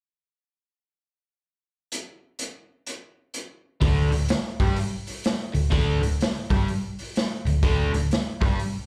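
A swung 4/4 groove at 126 BPM opens this raunchy, swaggering cut from a longer piece of blues rock power trio and southern rock, with the raw garage drum kit playing alone from 1.9 s on hi-hat, kick and snare. The kit sits up front with a punchy kick, a medium-tuned snare and a gritty, saturated tone, its rolled-off top and pumping small-room sound giving it a rough edge. At 3.8 s the crunchy overdriven guitar and the vintage muted picked electric bass enter together over a Dsus4 chord, the guitar playing a double-tracked riff from D2 to G3, treated with phaser and slapback echo. The bass sits low beneath it, dark, round and foam-muted, with an amped character. The whole performance comes across as a live gig heard through the venue's PA, with club reverb but little added ambience, and both guitar and bass stop at 8.6 s.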